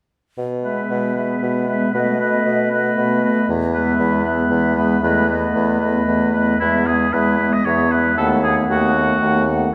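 Quick, graceful and spirited classical-period chamber music for wind quintet in triple time, cut from a longer piece, in which a pure, metallic silver flute with vibrato and a soft attack carries the melody over an up-front oboe second line, a smooth-topped French horn and a distant, roomy clarinet in accompaniment, and a warm bassoon bass that enters first at 0.4 seconds, the quintet heard from further back in a wet concert hall.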